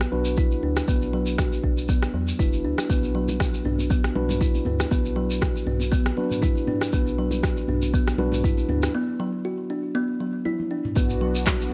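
Afro house at 119 BPM in B minor, this short cut from a longer piece feels warm and spiritual, sitting on a B minor chord with a light 16th-note swing. A produced afro-pop kit of handclaps, rim click and toms re-recorded in a small room plays from the start, and a deep, tape-warm electronic kick arrives at 0.4 seconds and sits up front. A soft, round FM bass with a woody, dark tone and fast, decaying attack carries the low end through transformer saturation and sidechain pumping. Up front, a kalimba plucked with the fingertip plays short, mellow arpeggios, while a clean tine electric piano adds stabs, both treated with analog delay and sidechain pumping. A grainy, compressed shekere runs throughout, and very quiet acoustic congas enter at 2.9 seconds, before a break from 8.9 seconds ends in a drum fill. At 11.0 seconds a smooth, detuned sawtooth pad with chorus begins to sustain chords, all set in a dry, gritty hardware-style digital ambience.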